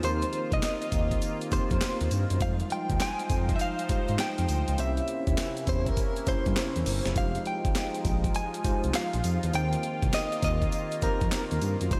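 New jack swing R&B at 101 BPM with a swung 16th-note feel, punchy and slick over a Cm7, Fm9 and C7b9 progression: a gritty, pitched-up breakbeat kit with a thumpy kick, snare, hi-hat, handclaps and tambourine sits up front beside a dark, detuned sawtooth synth bass, while a bright, direct-recorded clean electric guitar carries the melody with tremolo and slapback echo, a worn, slightly out-of-tune tine electric piano adds slapback-echoed accompaniment, an airy, evolving resonant pad holds chorused chords, a grainy, vintage tube shaker sits very quietly beneath, and a lush hall reverb gives the mix a big arena sound.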